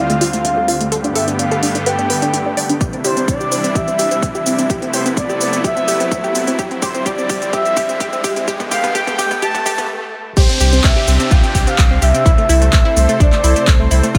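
A straight 4/4 progressive house pulse at 127 BPM in A minor drives this expansive excerpt, where a deep house kit of smooth hats, cabasa, handclaps and crash pumps beneath a lush, detuned supersaw pad, a bright, phased analog pluck arpeggio under a filter sweep, and a smooth, dark portamento lead with vibrato, chorus and dub echo. A punchy, up-front electronic kick joins at 2.8 s as a riser climbs in the background through a drum fill, and the build-up halts at 9.9 s. At the drop at 10.4 s a round, deep analog bass enters, all set in a lush hall reverb.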